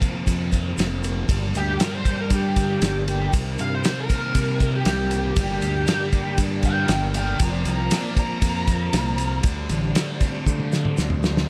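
Psychedelic rock in G minor at 118 BPM, dark and mysterious, where a thick, double-tracked fuzz guitar riff and round, overdriven fingered bass sit over a cloth-damped, thuddy drum kit with a tight kick and dark cymbals, a grainy tube shaker rattles in the background while a slow-rotary tonewheel organ with key click holds sustained chords behind the band, and a bluesy overdriven lead guitar with wah and analog delay plays its melody from 1.6 to 9.4 seconds before a drum fill at 10.5 seconds.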